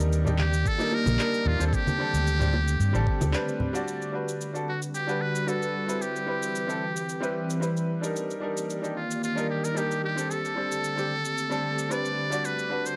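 A bright, slightly worn grand piano with tape echo and an airy, detuned pad with ensemble chorus open this warm, sunny sunset chillout cut in G major at 112 BPM, joined at once by a round, dark fretless bass and electronic cabasa and handclaps, with close, dry congas and bongos entering in the background at 0.3 s. A buzzy, thin trumpet with metal mute takes the melody from 0.4 s with light vibrato and scooped notes, while a knocking electronic kick plays only until 3.2 s and the bass drops out at 3.3 s for a short break. From 3.9 s the trumpet, piano, pad and cabasa carry on over Gmaj7, Cmaj7, Ebmaj7 and D7sus4 chords, all set in a gritty, cassette-toned recording with light studio reverb.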